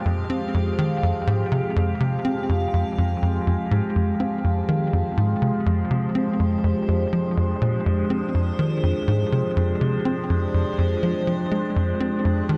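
Ambient, sequencer-driven space music in F dorian at 123 BPM, this expansive, hypnotic excerpt rests on a single Fmadd9 chord across its 12.6 seconds. A tight, punchy sequencer bass with a sawtooth and square-wave bite, filter pluck and moving notch drives a riff from 0.1 s, colored by analog chorus and analog delay. Above it, an evolving, morphing wavetable pad sustains chords with a slow attack and long release through phaser and built-in reverb, all set in a huge, dark reverberant space with an 8.9-second decay.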